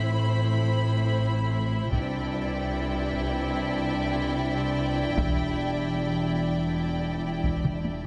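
A taiko ensemble struck with hard sticks stands out in this heroic, relentless passage of epic orchestral film score, entering at 1.9 seconds with a close, dry, acoustic punch and ending on a drum fill at 7.7 seconds. Beneath it, lush bowed strings build steadily at 74 BPM in E minor, moving through Amadd9, Cadd9 and Em7 chords. Violins carry the expressive, vibrato-laden melody up high with a soft attack, while a second violin line and a smooth, even viola accompaniment fill the middle. A French horn section holds sustained chords with light vibrato and a present, classical-style tone. Rich cellos sit in the background beside warm, expressive double basses at the bottom, and light reverb with close, detailed microphones keeps this extract from a longer piece full yet clear.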